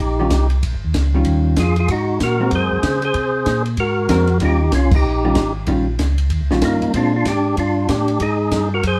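Soul jazz organ trio swinging at 190 BPM in Eb mixolydian, a bluesy excerpt cut from a longer piece, with a band accent landing at 4.9 seconds over chords moving from Eb9 through Ab9 and Bb9. A fat, lightly overdriven tonewheel organ with third-harmonic percussion and a slow rotary speaker carries the melody up front, while a second, round and clean tonewheel organ with key click and slow rotary plays the bass line beneath it. A dark, compressed hollow-body electric guitar comps from 0.2 to 7.1 seconds, and a compact cocktail kit with a high-tuned snare, punchy kick, hi-hat, ride and crash swings along, all heard from further back in a room with moderate reverb.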